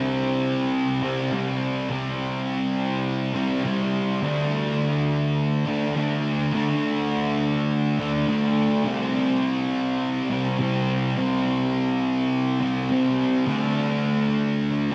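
A dreamy mix soaked in lush hall reverb surrounds this melancholic rock fragment, cut from a longer piece and tuned to A4 = 443 Hz. A thick, double-tracked fuzz guitar sits up front and plays alone from 0.0 to 14.9 seconds, its picked electric tone colored with distortion and chorus as it moves between C5 and D5 chords. The tempo holds at 104 BPM in a straight 4/4.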